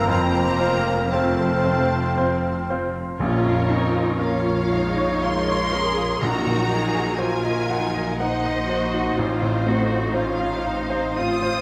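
Tragic and passionate, this slow, rubato romantic passage for piano and orchestra in Bb minor at 60 BPM sets a clear, up-front baby grand against a bright, intense violin melody and lush supporting strings, while clarinet, cor anglais, flute ensemble, bassoon, French horns, a barely audible trombone section and trumpet stabs colour only the opening 2.8 seconds before close, dry timpani on hard mallets sound from 3.2 to 7.7 seconds, all within a moderate scoring-stage reverb.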